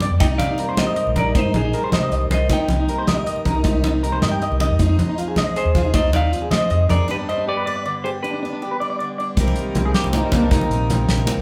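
A bittersweet highlife guitar band excerpt in C minor at 105 BPM in a straight 12/8 opens with bright, jumbo-bodied acoustic guitar accompaniment with finger squeak, twangy, slightly broken-up electric guitar arpeggios, a dark, round, foam-muted bass, a dry, damped 70s drum kit with tight kick, and hard-handed, compressed congas. From 0.2 s a clean, hollow-bodied semi-hollow electric guitar carries the melody up front over Cm7 and Fm7, before a break on G at 7.1 s. At 9.4 s a clean electric guitar solo arrives as a reedy, breathing harmonium adds sustained chords in the background, all in a live, single-room sound with a moderate large studio reverb.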